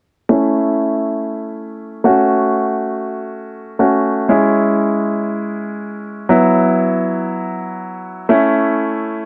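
Pop piano excerpt in free time and A major, with a euphoric, upbeat mood, cut from a longer piece. A clear, polished baby grand piano sits up front as the accompaniment from 0.3 to 9.3 seconds, played through a low-pass filter with a filter sweep, moving through A, F#m, C#m and Esus2 before returning to A at 8.3 seconds. A lush hall reverb and dark production surround the playing.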